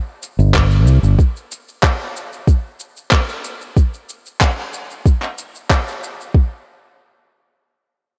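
Worn, warbling old-cassette sound with pitch drift and light reverb colors this relaxed sunset chillout excerpt at 93 BPM in 4/4: up-front layered electronic cabasa and handclaps with a small-room, tape-warm tone enter at 0.2 seconds, a soft, overdriven electronic kick drum joins at 0.5 seconds, and a dark, round fingered electric bass with tube saturation sounds only briefly, from 0.4 to 1.1 seconds.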